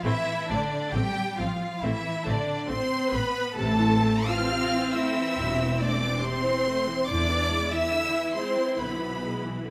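A slow, solemn string-orchestra movement opens with all five sections together, its rubato phrasing full of yearning. A focused, up-front violin section carries the melody with vibrato over a second violin line of soft attacks and expressive portamento, while smooth, even violas, a warm cello section and rich, lush double basses fill out the harmony. The chords move to E7 at 7.1 s in a moderate recital-hall reverb, in a brief excerpt cut from a longer piece.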